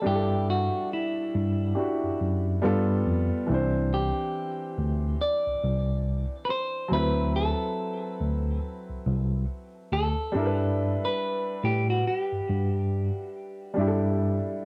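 Lo-fi hip hop at a relaxed 70 BPM in G major, this cosy, mellow passage is cut from a longer piece and sways with a 60% swing on the sixteenths in 4/4. A clean, picked electric guitar carries the melody up front, its tone carrying tape echo as it moves between E4 and D5. Beneath it, a woody, natural upright piano plays the accompaniment from E3 to C5, bathed in plate reverb. The bass line comes from a tine electric piano, worn and slightly out of tune, heard through its built-in speakers in the low register between C2 and A2, sitting a touch louder than the other parts. The harmony drifts through lush extended chords, G6, G9, Cadd9 and D13, before settling back on G6 at 10.3 seconds, all captured in a dry, gritty hardware recording with light reverb.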